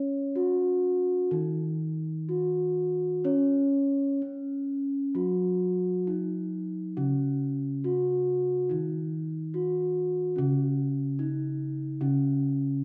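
In a straight 4/4 pulse at 62-73 BPM, this gamelan excerpt from a longer piece moves with a ceremonial, shimmering character. Two gamelan-type bronze metallophones play together throughout: one carries the melody between Db4 and Db5, and the other supplies accompaniment an octave lower, from Db3 to Db4. Both are struck with padded disc mallets, giving a soft, mellow ring to their metallic bronze tone, with the upper instrument sounding airy and the lower one sitting mid-forward. The two sit up front in a dark, warm mix, bathed in the lingering tail of a recital hall reverb. At 10.4 s the music shifts into a new section that carries on until the fragment ends at 12.8 s.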